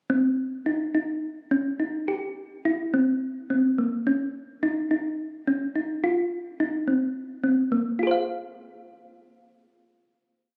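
Captured on a phone in the room, this short, complete piece sits in a moderate plate reverb with a tail of about 2.6 seconds, giving the capture a studio sheen. It is a progressive instrumental in F minor, moving in a driving 7/8 at 213 BPM counted in eighths, with a straight feel and an intricate mood. The only voice is a thumb-piano-like synth pluck playing solo from 0.1 to 10.6 seconds, spanning Bb3 to F5 as an up-front ostinato. Its FM tone is round and tine-like, with a fast attack, a short decay, a noise layer and a mellow chorus shimmer. The harmony runs from Cm through C7, Dbsus2 and F5 before settling on a final Fm chord at 8.0 seconds, which rings out to the close.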